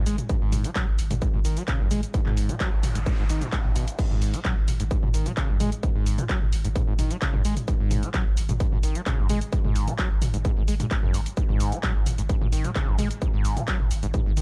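A squelchy, gritty acid bass riff with subtle chorus and delay opens this relentless, dark peak-time techno excerpt beside a deep, thick sub bass of overdrive and low-pass filtering, both pumping with sidechain, while a distorted, up-front electronic kick and a layered kit of crash, handclaps, warm hi-hats, shaker and toms carry large-room ambience, and an electronic noise sweep passes through from 2.4 to 4.0 seconds.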